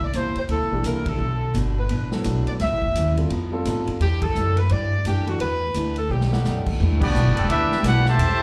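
Swinging at 172 BPM in 4/4, this brassy, dramatic big band jazz cut in E minor opens with a clear saxophone section carrying the melody over picked steel-string acoustic guitar, woody pizzicato upright bass up front and a hall-toned drum kit with a boomy kick, joined at 0.7 seconds by a warm concert grand piano with audible action noise, before a drum fill at 6.1 seconds brings in a bright trombone section in the background, and then a vintage trumpet section with vibrato takes the lead at 7.0 seconds over distant, nasal muted trombone chords, the band heard as a live club gig through the venue's PA.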